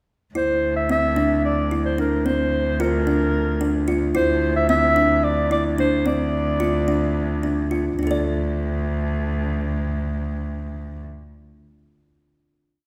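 The piece moves in an uneven 7/8 at 219 BPM counted in eighths, with a straight feel, and sits in D minor as contemporary chamber music with an urgent yet pensive mood. A close, dry kalimba carries the pulse with a ringing ostinato of plucked arpeggios between C4 and D5, its woody, hollow-box tone brightened by a thumbnail pluck. Beneath it a single cello sustains a low D2 from 0.3 seconds, played sul tasto with an airy bow, soft attack and light vibrato, intimate and up front. The clarinet enters at 0.4 seconds with a free, jazz-inflected solo line between Bb4 and E5, its mellow, smooth top shaded by vibrato and scooped notes, and it falls silent at 7.4 seconds. The harmony drifts through Dsus2, Bbadd9/D and Dm7 before settling on a final D minor chord at 8.0 seconds, which rings out in the recital-hall reverb of a church or concert hall.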